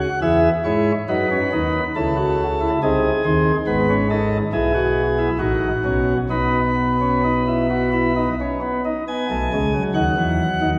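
A chamber organ on a principal chorus carries this baroque-style three-part fugue alone, its full, chamber-voiced tone edged with a crisp chiff and sitting up front in the sound. The mood is lively and elegant, moving at 65-71 BPM in a straight 3/4. The music begins in F# minor and turns toward E major from 3.7 s, passing through chords such as F#m, G#/B#, E/G# and B. A new section opens at 9.1 s on an E/B chord before the passage breaks off at 10.8 s, cut from a longer piece. The organ spans G#1 to G#5, tuned to A4 = 444 Hz, and a soaking scoring-stage reverb with a 2.0-second decay places the listener further back in the room.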